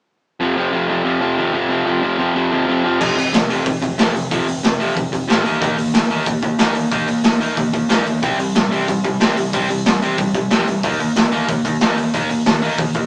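A small-speaker, lo-fi sound with light reverb puts a punk rock band in one room, raw and aggressive at 184 BPM in a straight 4/4, cut from a longer piece. The distorted electric guitar sits up front, bright and compressed, picking a riff from F2 to Eb4 over the full stretch, while an overdriven semi-hollow guitar plays its own riff in the background with a hollow-body ring until 3.0 seconds. Beneath them, a growling picked electric bass, overdriven yet bright, holds the low end from F1 to Ab2 further back in the mix. At 3.0 seconds the raw garage drum kit crashes in, muffled and gritty with a rolled-off top, a punchy kick and a medium-tuned snare driving hi-hat and crash cymbal up front. The riff moves through F5, Eb5, C5 and back to Eb5, keeping the energy blunt and relentless.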